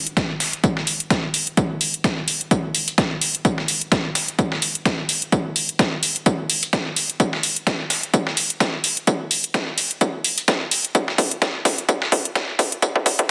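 A punchy, overdriven electronic kick drum sits up front in this swaggering, bouncy house excerpt at 128 BPM in 4/4, with a 56% swing on the sixteenths. Beside it, a metallic electronic hi-hat, also overdriven and layered, carries a roomy sheen from being re-recorded in a large space. A gritty, compressed sampler-style kit adds hi-hat, a fat snare and tambourine, with its hats and percussion high-passed and pumping under sidechain. The passage works as a build-up throughout, and a drum fill takes over from 7.2 seconds to the end at 13.3 seconds. The mix is dry and dense, with a heavily limited modern master that keeps the drums forward.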